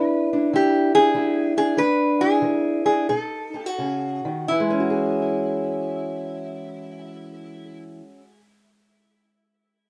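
A lap resonator guitar and a fingerpicked steel-string acoustic guitar start together, opening this short cut from a longer acoustic country blues piece with a gritty, rollicking mood and a swung feel in 4/4. The resonator carries the melody, played with slide and fingerpicks. Its bright, metallic, nasal tone sits up front, trailed by tape echo. Beneath it, the parlour-style acoustic supplies fingerpicked accompaniment with a dark, boxy sound, also placed close and forward. The pace slows over the opening stretch as the harmony moves from E7 to B7, and a new section arrives at 4.5 seconds on an E69 chord. The resonator drops out at 7.8 seconds, leaving the acoustic to ring on until 8.4 seconds, set in light reverb within a rough home-demo mix.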